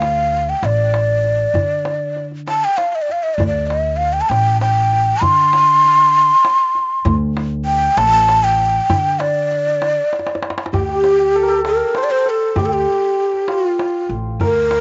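In a straight 3/4 at 98 BPM, this melancholic, hypnotic Persian modal ensemble piece in D shur sets a breathy, hollow, close-miked ney up front on the melody over a woody, growly pizzicato upright bass and a tight tombak, whose fill at 10.1 s ushers in a shimmering hammered santur as a second line from 10.7 s, all heard dry in an outdoor setting with a dark, rolled-off top.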